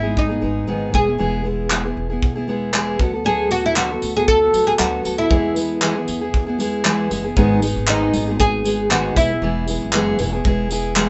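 A plectrum-plucked oud carries the melody from the opening moment, its double strings sounding deep and woody, with a full-bodied, fingerpicked jumbo steel-string guitar and a dark, pizzicato upright bass underneath. This is carefree, heartfelt acoustic pop in E major at 117 BPM in 4/4, with a light swing on the sixteenths and tuning set slightly low at A4 = 438 Hz. A polished, airy drum kit joins at 0.2 seconds with a punchy kick, handclaps and tambourine, sitting up front alongside the oud and the guitar. The harmony moves from G#m to E to D6 and back to E before a second section begins at 7.4 seconds and returns to G#m and E. The fretless oud stops at 10.2 seconds, leaving guitar, bass and drums to finish this excerpt from a longer piece. The band sounds as if playing live in one room, with light reverb and nothing above 8 kHz.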